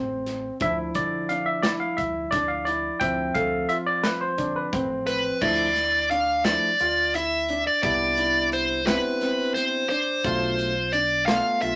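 Progressive instrumental in 7/8, tense and driving, where a barky, clean tine electric piano solos up front for the first 5.4 seconds over mellow grand piano arpeggios, a round, deep dub fingered bass and a big rock kit with bright cymbals and a punchy kick, before an overdriven, smooth lead guitar takes the melody from 5.1 seconds, set in a moderate studio room.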